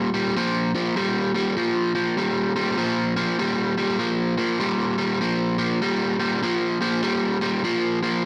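Laid-back and swaggering, this short blues fragment is cut from a longer piece and settles into a relaxed swing in 4/4. A single overdriven electric guitar carries it alone from 0.0 to 8.2 seconds, sitting in a low register between Bb2 and G3. It opens on a Bb5 power chord, and the picked tone is warm and compressed, placed up front in the mix. A moderate echo-chamber reverb gives the guitar a roomy, ambient tail. The brief clip feels like one loose, confident statement lifted from a longer performance.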